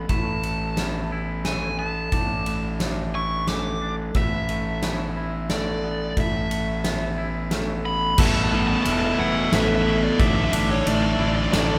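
Post-rock in 3/4 with a straight, euphoric and hopeful feel, cut from a longer piece and played by a band together in a large studio room with moderate reverb. A huge arena drum kit sits up front with a fat snare, punchy kick, crash and ride, alongside a growly fingered bass driven into overdriven fuzz. An overdriven electric guitar carries the melody high above, while a twangy, clean guitar picks arpeggios in the background and a vibraphone with soft mallets adds ringing, mellow arpeggios with motor vibrato. Underneath, a very quiet pedal steel guitar holds sustained chords with fingerpicks, slide and volume swells, its tone clean and compressed. At 8.2 seconds the chords move from suspended A and D shapes to Esus4, and two distorted guitars join with riffs: a thick, dark fuzz guitar in the background and a tight, bright one reaching down low.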